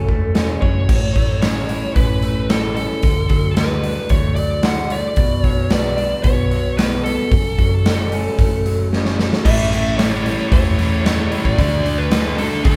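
A biting, overdriven lead guitar carries the melody over twangy, slightly broken-up arpeggios from a lo-fi electric guitar, a round, dark hollow-body bass and an up-front acoustic rock kit with a punchy kick and bright cymbals in this anthemic, restless quiet-loud alternative rock excerpt, where a drum fill at 8.9 seconds ushers in a thick, warm fuzz riff at 9.4 seconds, backed by a high-gain distorted guitar sitting in the background, as the arpeggios stop at 9.5 seconds, all played live in one room with light reverb.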